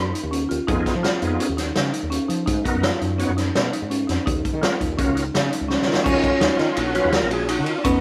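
A buzzing, dry marimba plays arpeggios over a growly, hollow-toned fretless bass as a gritty, punchy indie drum kit with a fat snare kicks in, setting a tense, intricate progressive groove in 5/4 at 168 BPM in Eb minor. A thick, lightly overdriven tonewheel organ with key click and a fast rotary speaker joins at 0.7 seconds, filling out the moving chords in a rough rehearsal-room sound. After a drum fill, the organ takes a solo at 6.1 seconds while a clean, picked electric guitar adds a background second line and a very quiet, grainy tube shaker enters, before this cut from a longer piece ends.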